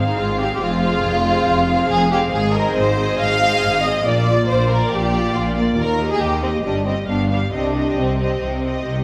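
A wet scoring-stage reverb surrounds this brief cut from a quick classical-period movement for string orchestra, set in C minor at 139 BPM in a straight 4/4 with a stormy, restless mood. A violin section carries the melody between D5 and F5, its lush, vibrato-rich tone sitting distant in the hall. A second violin section plays a second line from C4 to F5, sounding up front with a warm, light vibrato and a smooth top. Violas fill the accompaniment in a rich, even register, while cellos and double basses share the bass line, bowed and full-bodied down to F1. The harmony moves from Fm/Ab through Fm, Ab, Bb and Eb before a G7 resolves to Cm at 7.5 seconds, closing the 9-second passage.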